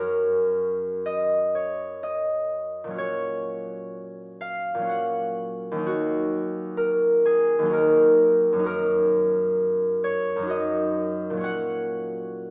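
Serene and dreamy, this short passage cut from a longer classical work features a solo concert harp in a gently flowing 3/4 with a rubato feel. The harp is bright and ringing, thumb-plucked and placed up front, covering a range from D#2 to F#5. Its harmony moves unhurriedly from F# through F#/A# to D#m and D#m/F#, returning to F#/A# near 11.4 seconds. A wet stone-room reverb with a 1.3-second decay lets each note hang in the air. The sound carries a small-speaker character, adding a compact, intimate quality to the recording.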